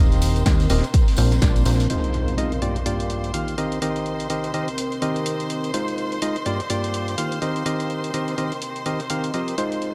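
Joyful and euphoric, this piano house excerpt with swung 16ths rides on a hollow, percussive organ stab riff with chorus and tape echo, over a punchy, funky sawtooth bass that stays up front until 1.9 s, alongside a layered electronic kick heard only from 0.5 to 1.5 s. A distant, bowed chamber violin section holds clear, vibrato-rich chords, while a deep, moody detuned pad with chorus and built-in reverb sits in the background, and the violins, organ, bass and pad all pump with sidechain. An analog drum machine supplies snare and hi-hat with tape echo, a tambourine adds shaker and handclap colour early on, a roomy brush kit is barely audible, and an electronic impact hits at 1.9 s as the Eb6, Fm7 and Gm7 changes roll through an echo-heavy mix.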